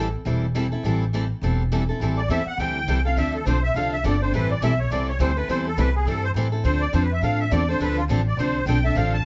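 Jazz manouche with a virtuosic, swinging mood, cut from a longer piece: two picked steel-string acoustic guitars comp over a woody, thumpy pizzicato upright bass on gut strings that sits up front. One guitar carries audible finger squeak, while the other, full-bodied with fresh strings, stays in the background. At 2.2 s a reedy, shimmering musette accordion enters up front and takes the solo over chords moving between Am7 and Dm7, the whole recording set in light reverb with a soft top end.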